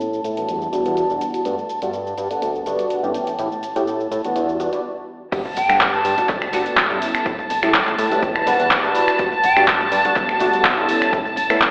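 A punchy, overdriven analog drum machine drives this sunny, joyful filtered disco house clip in straight four, its hi-hats, shaker, handclaps, finger snaps and crash sitting up front under a filter sweep, until a brief stop at 4.8 s gives way to the drop at 5.3 s, where a dry electronic kick and background tambourine and congas join. Beneath, a fat, saturated sawtooth bass and a funky, chorused polysynth comp with a moving notch both pump through Em7, Gmaj7 and A7 changes, while an intimate chamber violin section holds soft, bowed chords. A hollow concert flute adds short delayed phrases from 5.6 s, and the mix sits in a washy digital room reverb with a telephone-like coloring.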